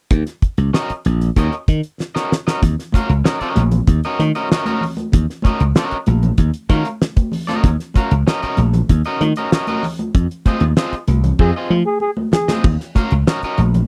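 A straight 4/4 funk groove at 96 BPM in Eb dorian drives this dry, close 1970s-style studio recording, cut from a longer piece. A growly, punchy slap bass and a damped drum kit with a fat snare, tight kick and dark cymbals sit up front, while a twangy, slightly broken-up electric guitar plays picked accompaniment. High-tuned, ringing congas played with hard hands join at 2.6 s after a drum fill, the harmony moves from Ebm7 to Fm7 under a band accent at 10.1 s, and a mellow, breathy trombone enters at 11.4 s with vibrato and a scooped Ab4 before the chords return to Ebm7.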